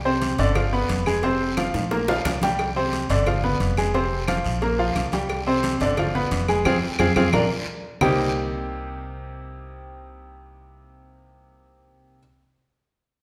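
A bright, up-front upright piano accompanies this driving, danceable salsa excerpt with brilliant, polished comping, its short sustain and audible action noise giving it an intimate feel. A pizzicato upright bass with steel strings adds a woody low end, while background congas with a thick skin, a round, low-tuned and saturated cowbell and bongos, dry claves and a raspy guiro fill out the groove, with drum fills and a band accent pushing toward the change. The percussion stops at 8.1 seconds, leaving piano and bass to carry on in a wet, large studio reverb until the cut at 12.2 seconds.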